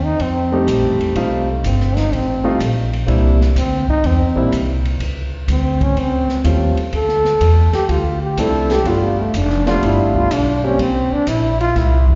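Relaxed and swinging, this small-group jazz piece moves at 125 BPM in 4/4 with a loose swing feel in C mixolydian. A mellow, punchy, close-miked trombone with scooped notes and a touch of slapback echo takes the solo up front, over a woody, thumpy pizzicato upright bass and a smooth, boomy open drum kit with dark cymbals. An intimate upright piano with audible action noise and long sustain comps from 0.5 to 10.8 seconds as the chords move from F7 through A7alt and Dm7 to G7 and C7, all captured as a live gig through the venue's PA with recital-hall reverb and a dulled top end.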